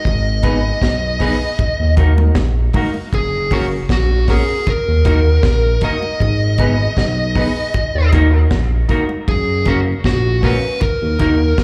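Uplifting roots reggae cut from a longer live club set, where a dark, fuzzy lead guitar carries the melody through dub and slapback echoes over a smooth, up-front sawtooth synth bass, a dry deep drum kit with a high-tuned snare and tight kick, background congas with hard hands, a clean hollow-bodied electric guitar, and woody upright piano stabs, all cycling through G#m, D#m and F#.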